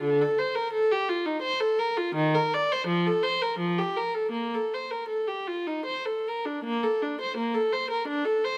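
Close, detailed microphones capture a single viola up front in a moderate recital hall, with a reverb tail of about 1.3 s giving the bowed notes a gentle bloom. This short cut from a longer baroque-style suite movement features the unaccompanied viola alone from 0.0 to 8.6 s, moving in a flexible, rubato three-beat metre. Its gut-string, period-style tone is reedy with a smooth top, ranging from D3 up to D5. The mood is serene and radiant, with the playing unfolding in an opening passage before a new phrase begins at 6.6 s and carries through to the close of the fragment.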